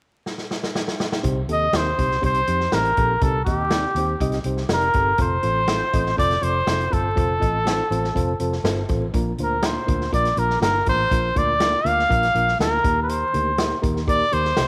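A straight 4/4 groove at 122 BPM drives this urgent, uptempo 1960s-style soul excerpt in C dorian, as a swinging big-band drum kit with punchy kick, medium-tuned snare and hi-hat kicks off with a fill at 0.2 seconds before a dark, round, foam-muted electric bass and a reedy, mellow electric piano with fast tremolo join at 1.2 seconds, and an up-front trumpet with light vibrato takes the melody from 1.5 seconds over Cm, F, Bb and Eb, all bathed in spring reverb and vinyl crackle.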